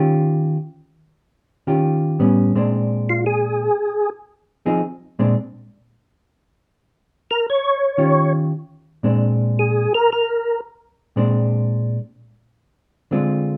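Bluesy and greasy, this swinging jazz passage is cut from a longer piece and moves at 114 BPM in 4/4 with swung eighth notes, centred on Bb mixolydian. A hollow-body electric jazz guitar plays accompaniment throughout, its clean, fingered tone dark and placed up front. A percussive tonewheel organ carries the melody in brief phrases, first around 3.1 seconds and again from 7.3 to 10.6 seconds, with a mellow, round voice, a third-harmonic percussion click, chorus vibrato and a slow rotary speaker. The harmony moves through Eb9, Bb9 and Fm7, pauses on a brief N.C. stretch where the chords drop away, returns to Eb9 and Bb9, and closes on Dm7b5. Close, detailed microphones and a moderate club reverb give the pair an intimate club presence.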